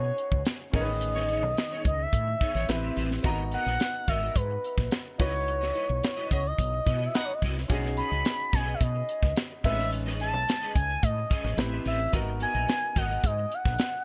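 A bright, glossy 1980s-style digital production with studio reverb frames this breezy jazz-funk pop excerpt, cut from a longer piece and moving in a straight 4/4. Up front, an expressive synth lead carries the melody with a smooth, mellow sawtooth-and-triangle tone, fast attack, sustained notes, vibrato and chorus. A woody fretless bass sits equally forward, dark, round and hollow-bodied with an analog chorus, while a dry funk kit adds bright cymbals, a high-tuned snare and a tight kick. A vintage grand piano with subtle chorus and a clean, picked electric guitar with ensemble chorus fill in the harmony and riff beneath, moving through lush chords such as B69, Amaj9#11 and C#m11. The full band hits a shared accent from 5.5 to 7.7 seconds, and within it a clear, jazz-style horn section briefly adds a second line with light vibrato at 6.3 seconds.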